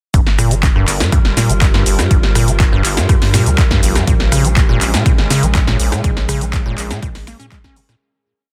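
A punchy electronic kick drum in four-on-the-floor, a rubbery, resonant acid bass line with accents and slides, and a thick, saturated sub bass open this short, gritty, hypnotic acid house piece at 122 BPM. An analog drum machine adds claps, snaps, rim clicks, shaker and hats around a backbeat snare, while a warbling, nostalgic pad holds chords from Gm7 to Bbm7 behind the pumping low end. A cloudy granular pad drifts in at 1.3 seconds before the dense, heavily limited mix fades out from 5.4 seconds.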